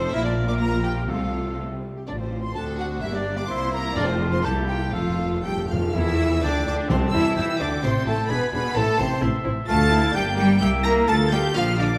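A lively, spirited classical-period orchestral movement in F major at 127 BPM in 2/4, played with rubato, opens with strings, winds and horns together: a distant, expressive violin section with portamento carries the melody, while a pure-toned flute, a solo oboe and a second, smooth violin section add second lines over bowed viola accompaniment and mellow, vintage French horn chords. Lush cello and an up-front double bass section hold the bass, and timpani with medium mallets enter at 1.1 seconds, then return at 4.0 seconds, playing a fill from 4.9 to 5.9 seconds. A moderate scoring-stage reverb gives the whole orchestra a spacious bloom.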